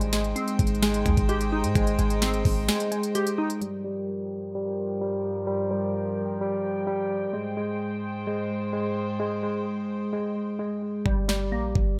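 Menacing and brooding, this half-time trap fragment puts a worn, slightly out-of-tune tine electric piano up front, its filtered arpeggios trailing digital delay, over bowed chamber strings with gut-string tone and light vibrato that hold chords until 11.0 seconds. A crystalline, detuned wavetable pluck with chorus, a deep, boomy 808-style bass and an overdriven trap kit with knocking kick, sharp snare and crisp hats drive the opening, then fall away until they return at 11.1 seconds, this time with the hi-hats muted. A filter sweep shapes the middle stretch, and light reverb lends the mix a touch of space.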